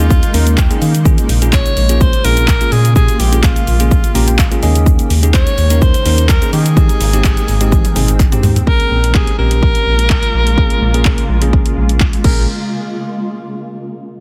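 This driving, confident dance-pop excerpt opens at 126 BPM in Bb dorian, with a bright alto saxophone singing a pop-style solo melody with vibrato, softened by a low-pass filter and trailed by dub echo. Beneath it, a bell-like tine electric piano adds clean, direct accompaniment with brief fills within the first five seconds, while a shimmering, ethereal pad sits in the background with detuned unison, chorus and reverb, pumping against the beat. A deep, round analog bass carries the low end with a fast attack and sustained notes, also pulsing with sidechain pumping. Up front, a punchy, layered electronic house kit drives the groove with kick, hi-hat, shaker, claps, toms and crash, joined from 1.5 to 8.3 seconds by a very quiet, crisp group handclap in a small room. A drum fill at 7.7 seconds leads into a filter sweep from 8.7 seconds as the chords settle from Eb7sus4, Bbm7 and Abmaj7 back onto Bbm7, all in a dense, heavily limited modern mix with little reverb.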